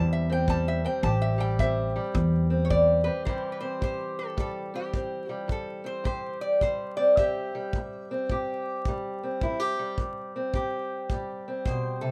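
Brooding and soulful, this swung acoustic country blues fragment sets an up-front lap resonator guitar, whose metallic, nasal slide tone carries the melody, over a dark, boxy fingerpicked parlour steel-string guitar accompaniment, joined by a woody, thumpy pizzicato upright bass that stops at 3.1 seconds and a tight brushed kick drum from 0.5 seconds, the mix sitting in light reverb beneath a layer of vinyl crackle.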